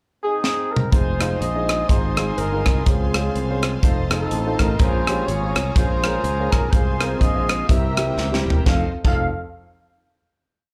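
Soulful and fervent, this uptempo gospel piece in F minor moves at 124 BPM with a swung 4/4 feel, captured as a live gig through the venue's PA with a touch of club reverb. A mellow horn section carries the jazz-style, motif-based melody in period phrases, and a tight funk drum kit enters with a fill at 0.4 seconds before driving a two-beat praise groove, its high-tuned snare and tight kick sitting up front. From 0.9 seconds the breakdown brings in a growly, fingered electric bass playing walking and running gospel lines with chromatic approach notes, along with a woody upright piano comping rhythmic drop-2 chords. Behind them, a lightly overdriven tonewheel organ with key click and slow rotary speaker holds a very quiet sustained pad, and a lush bowed string section with vibrato adds bright sustained chords in the background. The harmony moves from Fm7 through Dbmaj7, Bbm7 and C7, and after a second drum fill the piece settles on a closing F7 chord at 8.7 seconds.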